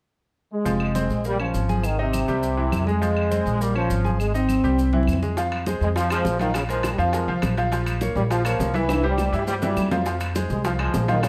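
This dark, warm-sounding salsa excerpt sits in light reverb, driving forward with a danceable pulse in straight 4/4. A punchy, tight trombone section carries the melody up front from 0.5 seconds, its smooth top edged with light vibrato in a pop style. Beneath it, a brilliant concert grand piano supplies accompaniment with a worn, intimate character, audible action noise, deep bass and short sustain. A woody, thumpy pizzicato upright bass on gut strings anchors the low end up front. Thick-skinned congas struck with hard hands and distant claves in a large room sit in the background percussion, joined by grainy, mellow maracas in a small room. At 5.4 seconds, after a drum fill, round low-tuned bongos and ringing metal-shell timbales join, and the harmony moves from a cycling Fm–Bbm–Ab–C pattern to Bb5 and Bbmadd9 before a second fill leads to Fm at 10.1 seconds.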